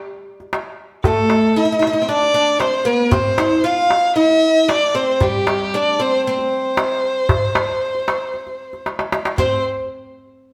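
A large, deep darbuka with a metal shell opens this excerpt at 0.4 seconds, its crisp, close and dry strokes setting a straight 4/4 pulse at 115 BPM for an Arabic maqam ensemble in C maqam rast, tuned to A4 = 442 Hz. At 1.0 seconds a single bowed violin takes the melody between G4 and F5, warm and expressive with vibrato, portamento and a smooth top. Just after, an acoustic, fretless oud enters with a second line from G3 to F4, its plectrum-plucked double strings sounding bright and woody. Violin, oud and darbuka all sit up front, with the violin the most prominent, and the band plays live together in a stone room whose reverb lasts about 1.2 seconds. The mood is stately, and a darbuka fill at 8.9 seconds leads into a new section as the passage, cut from a longer piece, draws to its close.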